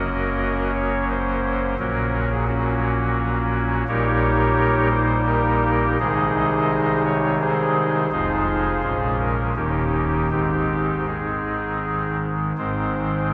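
Reverent and serene, this short excerpt of classical chorale-style music finds a solo pipe organ's soft oboe reed stop, baroque in voicing and shimmering with tremulant, sitting up front as it moves in a rubato 3/4 at roughly 78-88 BPM from Gb harmonies into Ab major by 3.9 s, reaching a settled Ab chord at 10.3 s, all bathed in a wet church reverb that places the listener further back in the room.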